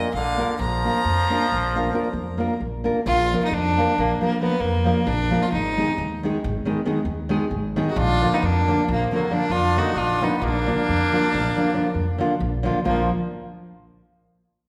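Restless and fiery, this Balkan folk excerpt drives along in a straight 11/8 at 270 BPM in eighths, with an up-front, airy-bowed, nasal fiddle carrying the melody over a full-bodied fingerpicked nylon-string guitar and a woody, thumpy pizzicato upright bass on gut strings, while a brilliant straight-muted trombone with light vibrato adds a second line that drops out at 2.6 seconds and returns at 7.9, the chords moving from Bb to Abm and back to Bb in the resonant wash of a recital hall.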